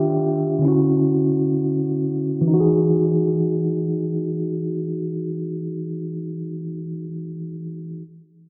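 A mellow tine electric piano carries this short, dreamy R&B fragment, cut from a longer piece and played in free time as a lone accompaniment part from 0.0 to 8.0 seconds. Its clean, up-front tone sits in a moderate, lush hall reverb with a long tail, heard through built-in speakers and shaded by a low-pass filter. A filter sweep runs across the opening 2.5 seconds, as rich ninth chords slide from D#maj9 to Dmaj9. At 2.5 seconds the harmony settles onto Emaj9, opening a second passage. The smooth mood comes from these lush voicings floating in the spacious hall.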